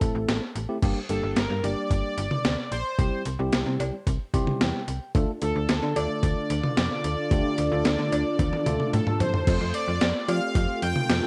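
A gritty, pitched-down boom bap sampler-style drum kit with a thumpy kick and high-tuned snare drives this wistful, nostalgic synth-pop fragment at 111 BPM in F major, alongside a snappy slap-like FM bass, a worn, slightly out-of-tune tine electric piano that plays a fill at 4.1 seconds, and a bold, fat analog synth brass melody carrying chorus, tape echo and plate reverb, while from 5.1 seconds a soft, organ-like ensemble organ-string with phaser holds sustained chords in the background of this home cassette recording.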